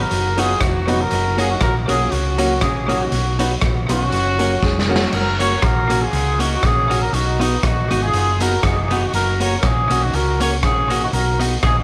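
A lightly swung 4/4 groove at 120 BPM drives this upbeat, joyful ska excerpt in F# major, moving between B and F# chords. Up-front horns carry the melody with light vibrato over a clean, scooped guitar with tape echo and a dark, round hollow-body bass, while a woody, slightly detuned upright piano adds stabs until 5.0 s. The gritty, saturated garage kit, with a punchy kick and its own tape echo, plays a fill at 4.6 s, all set in a small room with echo-chamber reverb.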